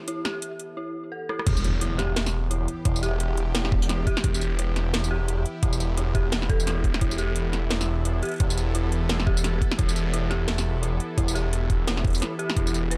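A swirling, thick detuned saw bass with a phaser sits up front in this heavy, dark half-time drum and bass excerpt, holding a single low note once the drop arrives at 1.5 seconds. From the start, a tense, string-like bowed drone sustains chords with a slow attack, phaser, vibrato, its own reverb and sidechain pumping. An eerie, inharmonic FM bell spins decaying arpeggios through chorus, tremolo and delay. A layered drum kit comes in almost at once, with cracking snare, metallic hats, rim click, tambourine and crash carrying a tape-warm small-room tone, and a fill leads into the drop. There a knocking electronic kick joins the bass, and an impact in the background sounds until 2.9 seconds. Swung sixteenths give the groove a loping feel, a short break arrives near the end before the clip cuts off, and a digital ambience surrounds the mix.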